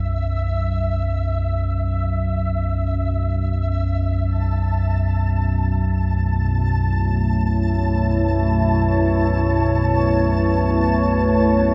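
A deep, rumbling drone with a nasal, ring-modulated edge opens this desolate, ominous dark ambient excerpt in free time, sitting up front while a quieter, flickering granular texture hovers high above. The harmony shifts from B5 to A/B at 4.1 seconds, and at 5.5 seconds a moody, warbling pad with a vintage character and chorus enters with sustained chords. The room is a huge, wet reverb that stretches the sound into a long, dark haze.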